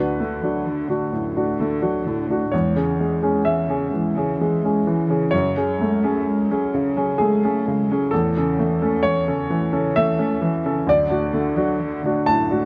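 An up-front grand piano, clear yet worn with a short, natural sustain, carries the accompaniment through this longing, melancholic neoclassical passage in a rubato 3/4, while a single dark cello, bowed sul tasto with vibrato, a soft attack and a smooth top, sits close and intimate beneath it as a second line, the pair moving over D, C#m/E, F#madd9 and A/E before returning to D in moderate studio reverb, the whole cut from a longer piece.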